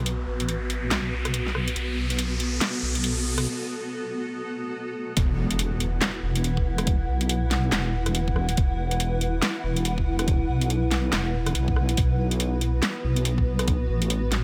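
Deep, soft wobble bass dominates this brooding deep dubstep excerpt, a dark, detuned sawtooth-and-sine tone with chorus that sits up front and sustains low from the very start. Around it, a granular cloud pad spreads blurred, evolving chords through its own built-in reverb, giving the piece a cavernous haze, while a riser climbs through the opening build-up until the break at 3.5 s and a filter sweep shapes the pad all the way to 5.2 s. Moving at 141 BPM in a swung half-time feel, the drop lands at 5.2 s with an electronic impact, and a knocking, layered electronic kick joins the dubstep kit. That kit, present almost throughout and placed up front, carries a huge snare, metallic hats, handclaps and rim clicks, both drum parts sharing a tape-toned, produced character in a dry studio ambience. The harmony shifts from B5 to Esus2 at the drop before returning to B5 at 12.0 s.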